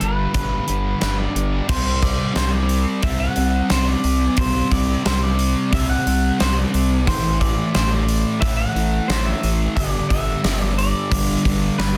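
This wistful, dreamy shoegaze and dream pop fragment, cut from a longer piece, opens with the whole band at once in a straight 4/4. A dark, double-tracked fuzz guitar sits up front with a distorted, picked riff thickened by lush chorus, while a gritty synth bass underpins it with a saturated, evolving tone that blends square, sawtooth and sine colours with oscillator sync. A gated 80s drum kit drives the groove with a tight kick, a medium-tuned snare, hi-hat, bright cymbals and crash, its gated room sound airy and polished. Over this, a picked electric guitar through a small old amp carries the melody, slightly broken-up and lo-fi, compressed and echoed by digital delay, sitting a little lower in the mix than the riff and bass. After a short opening passage, the music moves into a longer section at 1.7 seconds, with the harmony shifting through power-chord colours, and the drums drop out at 11.9 seconds, just before the end. 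The master is dense and heavily limited, with little reverb beyond the drums' own gated room.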